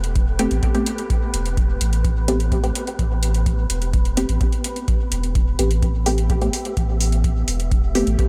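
A round sine sub bass, overdriven metallic hi-hats and an airy, breathy noise texture with its own reverb open this hazy, meditative dub techno excerpt at 127 BPM in A minor, joined at 0.2 seconds by a deep, overdriven analog kick. From 0.4 seconds a muted, detuned sawtooth chord stab on Am9 plucks through chorus, phaser and dub echo under a filter sweep, pumping along with the bass and texture. The sub bass sits up front, the dark wind-like layer drifts behind, and a light room reverb holds the short cut together.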